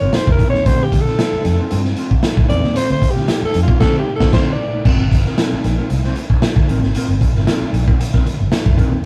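A breathy alto saxophone leads this hypnotic funk excerpt in G minor at 114 BPM, its raspy, gritty tone carrying vibrato as it solos from 0.0 to 4.9 seconds. Behind it, a mellow electric guitar plays clean, dark accompaniment, and a vintage muted fingered electric bass adds a round, foam-muted low end, both running through the full clip. A raw garage drum kit sits up front with a punchy kick, a medium-tuned snare, hi-hat and crash cymbal, its top end rolled off. The band hits an accent from 3.8 to 4.9 seconds, leading into the moment the saxophone finishes and the second section begins over a return to Gm11. The chords move between Gm11 and Dm7 in a straight 4/4 feel, captured as a rough rehearsal-room recording with short, wet booth ambience.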